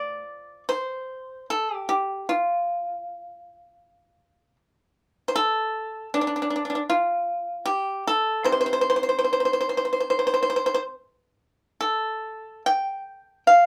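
A solo pipa opens this short passage of Chinese traditional music, sitting up front in the mix from the very first note. Played with fingerpicks, its tone is dry and percussive, with a warm acoustic body that lends the phrases an elegant poise. The performance moves in a free, rubato manner within a slow, unhurried pulse, letting each line breathe with a sense of longing. The instrument ranges from A2 up to G5, spanning low notes and high ones across the roughly 13.7 seconds heard here. A light reverb from the single room where it was played live frames the playing, and the clip is cut from a longer piece.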